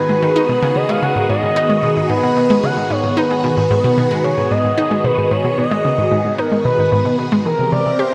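A dreamy, reverb-soaked sound opens this short cut from a longer piece of ambient, sequencer-driven space music, where a lush plate reverb with a 3.2-second tail gives the whole mix a hypnotic, expansive air. At 112 BPM in a straight 4/4 feel and G# minor, tuned slightly sharp to A4 = 441 Hz, the harmony rests on G#m7 before turning to C7 at 7.5 seconds. A swirling, vintage string machine holds sustained chords up front, its slow attack and long release colored by ensemble chorus and a phaser. Beneath it, a round, detuned analog pluck with a noise layer and a snappy filter envelope plays a bright riff in the low and middle register, thickened by chorus and analog delay. Above, a smooth, expressive synth lead blending sawtooth and triangle tones carries the melody, its mellow voice shaped by vibrato, a moving notch filter, chorus and analog delay.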